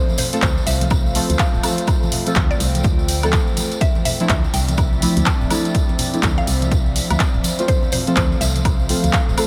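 Deep house at 124 BPM in 4/4 with a 61% swing on the sixteenths, this smooth, deep excerpt, tuned slightly flat to A4 = 438 Hz, is cut from a longer piece and drifts through a dreamy mix soaked in cathedral-like reverb. A punchy, overdriven electronic kick sits up front, joined by a layered, overdriven deep house kit of handclaps, hi-hat and woodblock, while compressed, saturated congas and a jingly, distant tambourine add percussion in the background. Underneath, a hollow, organ-like FM bass with a fast attack and decaying notes enters at 0.4 seconds and pumps through sidechain compression. Soft, wave-folded chord stabs with chorus, phaser, tape echo and sidechain pumping ride over a moody, detuned analog pad whose slow attack and long release give sustained, phased chords, moving from F to Dm9 at 3.8 seconds and on to F/D. Above it all, a woody, round, mallet-like FM pluck with a noise layer carries the melody in the background, coloured by chorus and tape echo.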